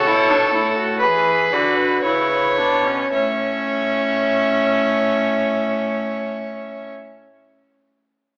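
Heard through a thin AM-radio filter and bathed in wet recital-hall reverb, this stately, elegant fragment of a baroque-style fugue for string quartet in A major moves at 52-65 BPM in 4/4, slowing over its first 3.1 seconds as the harmony passes from A to E7 and back to A, with a close, nasal first violin carrying the melody on an airy bow, an up-front second violin adding a second line with light vibrato, and a distant, rich viola and reedy cello supplying accompaniment and bass, all four in period-style gut-string tone.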